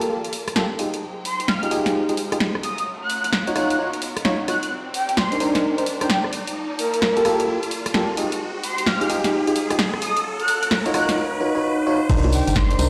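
Moody and soulful, this two-step UK garage excerpt builds over a riser as a breathy, flute-like synth lead carries the melody above glassy, bell-like FM electric piano stabs, a hollow organ-like FM bass and a lush violin section pumping in the background, driven by a punchy house drum kit with bongos and rim clicks, until an overdriven, knocking electronic kick and a jingly tambourine arrive at 12.1 seconds, the whole mix sitting in a plate reverb and stone-room ambience.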